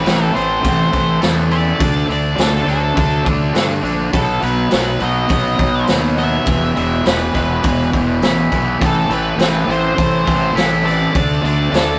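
A bright, distorted electric guitar riff sits up front in this cathartic, angsty stretch of quiet-loud alternative rock, cut from a longer piece and moving through Am, D, B and E before returning to Am and landing on D5. Above it, a dark octave-fuzz lead guitar carries the picked melody, its sound trailed by tape echo. Beneath them, a very quiet, compressed, twangy electric guitar plays clean fingered arpeggios. A round, punchy fuzz bass, overdriven and up front, joins at 0.1 s alongside a raw garage drum kit of hi-hat, punchy kick and medium-tuned snare, gritty and saturated with a rolled-off top. The whole thing has the rough feel of a rehearsal-room recording, with warm saturation and a moderate studio reverb.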